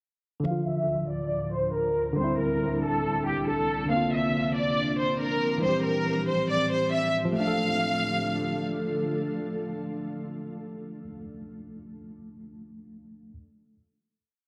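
A worn, slightly out-of-tune tine electric piano opens this short, dark and tense drill piece, its lightly overdriven held chords in open voicing sounding as if through built-in speakers, repeated like a sampled loop and trailed by tape echo. At 0.5 seconds a rich, focused violin section enters up front with a bowed, vibrato-laden looping melody that feels both studio-polished and distant, moving over a progression of Dm, Cadd9, Bbadd9 and Am7 at 139 BPM in a half-time 4/4 feel. An ethereal, airy pad with a slow attack fills in sustained chords underneath, its detuned unison tone bright yet softened by ensemble chorus, phaser and built-in reverb. The breakdown carries a filter sweep until 7.4 seconds, where the harmony returns to D minor for a final chord. The violins drop out at 8.6 seconds, and the pad's long release fades by 11.1 seconds while the electric piano rings on until 13.3 seconds. 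A moderate plate reverb and an echo-heavy mix lend the whole piece a haunted, spacious atmosphere.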